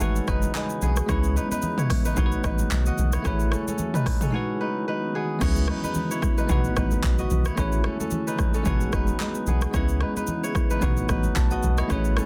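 An up-front deep house drum kit with a punchy kick, handclaps, shaker, rim clicks and a lightly clipped snare drives this sunny, joyful afrobeats excerpt, while a round sine sub bass holds the low end. A bell-like tine electric piano opens with a fill in its first 1.1 seconds before settling into accompaniment over cycling minor-seventh, dominant-seventh and major-seventh chords. A crisp fingerpicked kora riff rings through a digital delay, a glassy FM pad with chorus and phaser sits dark and ethereal in the background, and very quiet high-tuned congas add close, hard-handed percussion.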